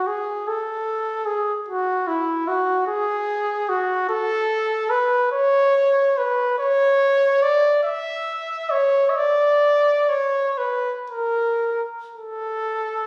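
Nostalgic and lyrical, this 13-second classical excerpt for unaccompanied trumpet unfolds freely in a rubato 6/8 at a slow 36-51 BPM in dotted quarters, tuned to A4 = 439 Hz, with a mellow, close-miked trumpet sitting up front and singing between E4 and E5 with a soft attack and light vibrato, set in a moderate recital-hall reverb with a phone-in-the-room quality, studio reverb and compression.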